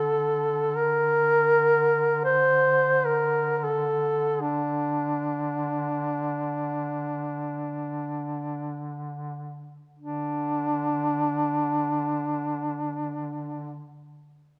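This is a Caucasian folk lament, cut from a longer piece, that unfolds in free time with a mournful, longing mood. A mellow duduk carries the melody up front, its soft attacks, vibrato and scooped notes giving the line a plaintive folk character as it moves between D4 and C5. Beneath it, a second duduk holds a low D3 drone that sits distant and roomy in the background, also shaded with vibrato and scooped notes. The pace gradually slows over the first 10.0 seconds before the music moves into a new passage that runs to the end. Both duduks sound together from the start until 13.9 seconds, framed by a moderate recital hall reverb that lends the performance a sense of space.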